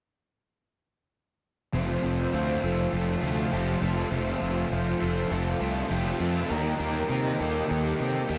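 A dark, hazy mix steeped in lush hall reverb frames this wistful 101 BPM rock passage in F major. From 1.7 s, an up-front overdriven electric guitar riff with chorus and a growly, fuzzed fingered bass carry the weight, joined by a very quiet hollow-body overdriven guitar riff and a swirling vintage string machine holding sustained chords under ensemble chorus and phaser. At 1.8 s, a twangy, slightly broken-up guitar enters in the background, playing compressed arpeggios through analog chorus and delay, as the harmony moves from Fmaj7 to Ebmaj7 at 6.5 s.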